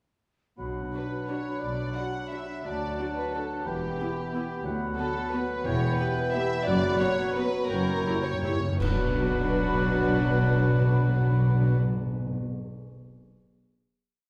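A bittersweet, sweeping orchestral ballroom waltz in B minor opens with timpani, a clear oboe, a mellow clarinet, an airy flute section, a mellow bassoon, cello and a dark double bass section in a rubato 3/4 at 155-195 BPM, soon joined by sul tasto violin sections doubling the tune, a floating viola section with after-beat chords, and a very quiet, dark horn section, all set back in a reverberant recital hall before slowing from 6.2 seconds through a round timpani fill and dark cymbal crashes with bass drum strokes into a final B minor chord at 8.8 seconds.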